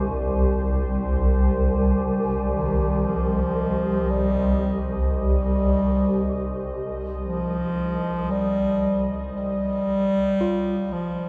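Drenched in a cavernous cathedral reverb, this desolate, dark ambient excerpt sets a mellow, smooth-topped solo bass clarinet melody up front, fading in over a swarming, detuned, wave-folded drone on C and a deep, warbling, chorused pad of sustained chords that gradually fades away, while bronze, beating gamelan-type bossed gongs play arpeggios in the background at the very start and again from 10.4 seconds, as the music fades out from 6.5 seconds.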